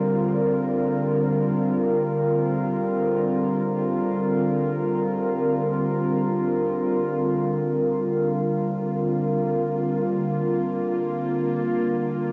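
A warbly, nostalgic tape-like pad holds mellow, detuned sustained chords up front through this luminous, weightless ambient fragment in free time and Bb major, with a filter sweep running across it until 7.2 s, while a very quiet, bell-like celesta ripples delicate arpeggios until 7.3 s and a tense, string-like bowed drone with vibrato sits in the background, all bathed in a lush hall reverb on a lo-fi home cassette recording.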